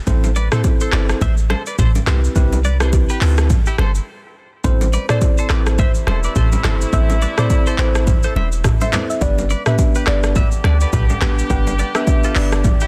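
A mellow, smooth afrobeats groove in A minor at 105 BPM opens with a tape-warm electronic drum kit (deep kick, crisp hats, handclaps, rim clicks, shaker and toms), a boomy sine-like 808-style bass up front, a bell-like tine electric piano and ringing congas and bongos in the background, with a bright, twangy direct guitar riff carrying analog chorus and tape echo joining at 0.4 s over a lightly swung 16th feel. After a brief break, a soft, round, dark pluck melody with chorus and tape echo arrives at 4.6 s, followed by a clear vintage horn section with light vibrato at 5.8 s as the chords move from A minor and C major 7 to G. The dense, heavily limited modern mix sits in digital ambience, and this cut from a longer piece stops at 12.9 s.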